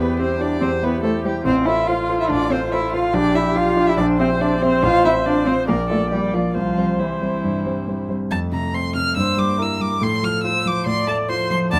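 A quick, cheerful classical-period movement for piano quartet in F major at 142 BPM, this lively passage is cut from a longer piece, and all four instruments play for its full 11.8 seconds. A close, veiled violin played con sordino carries the melody with vibrato and a soft attack, a dark, muted cello sings the second line, and a con sordino viola adds quiet accompaniment, while a warm concert grand with deep bass and short sustain sits up front beside the violin. Moderate studio reverb gives the ensemble a modest sense of space, and at 8.3 seconds the music moves into a new section, where a diminished chord briefly colours the harmony before it returns to F.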